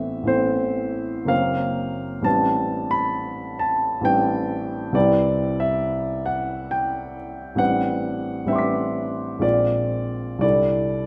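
A lush recital-hall reverb with a long 1.6-second tail surrounds an up-front baby grand piano whose natural, warm tone rings with long sustain across its range from F#1 to B6. This dreamy, serene impressionist solo piece unfolds in a rubato 3/4 at roughly 57-69 BPM, drifting through colorful harmonies such as Amadd9, F#maj7#11, Am11 and Cmaj7 before settling on C69 near 10.4 seconds. The recording is a short passage taken from a longer work.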